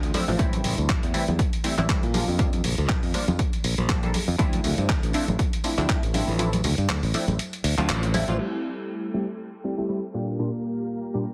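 A punchy, detuned sawtooth polysynth comp sits up front in this groovy, funky filtered disco house excerpt at 120 BPM in D minor. It carries a swung 16th feel and chorus, phaser, sidechain pumping and a low-pass filter, moving through Am7, Gm7/Bb and Dm9. Beneath it, a bright, growly fingered electric bass pumps along, joined by a gritty, compressed sampler-style soul kit of handclaps, hi-hat and crash, and a very quiet, ringing layer of tambourine and congas. An overdriven electronic kick hits hard from 0.4 seconds until 6.0 seconds, and the band lands an accent at 7.9 seconds. At 8.4 seconds a lush, mellow string machine enters beside the comp with full ensemble-chorused chords over a filter sweep, and the excerpt closes in a heavily compressed, radio-like sound with light reverb.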